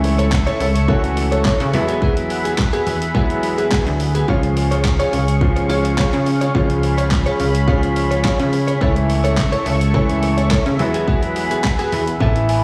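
Blown-out and overdriven with light reverb and small-room ambience, this euphoric, summery dance-pop excerpt in A major moves at 106 BPM in straight 4/4 over A/C#, Eadd9 and C# chords, driven by a layered electronic drum kit of punchy kick, fat snare, hi-hat and handclaps and a funky, plucky sawtooth analog bass up front, while the bass, a clear baby grand piano and a lush, detuned unison pad with chorus all pump under sidechain, a bright, clean direct-recorded electric guitar plays a picked riff through analog chorus, and the piano adds a fill from 11.6 to 12.6 seconds.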